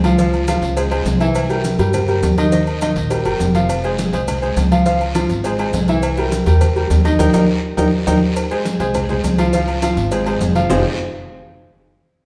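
A wet, roomy studio reverb surrounds this passionate, danceable salsa clip of a band playing live together, with a clear, slightly worn grand piano and a woody, thumpy pizzicato upright bass up front over a chord cycle that moves from Dbmaj7 through C7 and Eb to Fm. Bright, hard-handed congas are the most prominent of the percussion, joined by raspy guiro, grainy maracas, tight high-tuned cowbell and bongos, and ringing metal agogo bells and timbales set further back. The whole band hits an accent from 7.2 to 8.4 seconds, with a drum fill from 7.6 seconds leading into a new section, before the clip closes on Fm7.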